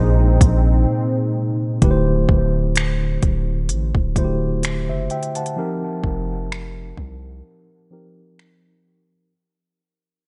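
Contemporary R&B at a slow 64 BPM with a lightly swung sixteenth feel, romantic and smooth, cut from a longer piece and fading out from 1.8 seconds onward. A mellow, clean tine electric piano carries the chords through low-pass filtering and dub echo, with a filter sweep from 1.8 seconds, while a detuned sawtooth pad with chorus sustains beneath it only until 1.8 seconds and a deep, sine-toned 808-style bass holds long decaying notes until 7.4 seconds. Entering at 0.4 seconds, an up-front electronic kit of soft kick, crisp hi-hats and finger snaps carries an overdriven edge, all set in light reverb within a dark, echo-heavy mix that moves from Bb9sus4 to D9sus4 and F9sus4.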